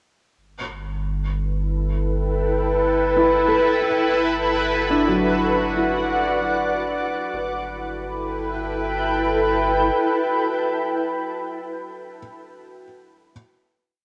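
Floating in free time, this complete ambient piece in G major feels weightless and serene. A deep, round sine sub bass holds the root G from 0.4 seconds. Up front, a bright, shimmering pad carries detuned, warbling sustained chords with an octave-up shimmer, granular grain, chorus, its own reverb and a vintage cassette tint, drifting slowly from G6 to Bm/G and back to G6. At 3.2 seconds a soft, felt-muted upright piano enters with intimate arpeggios built from three slow loops of unequal length drifting against each other, its action noise audible through cassette tape and tape echo. The piano and sub bass both fade out over the opening stretch, and from 7.3 seconds the final chord hangs in a wet spring reverb, while the home cassette recording lends the piece a homemade character.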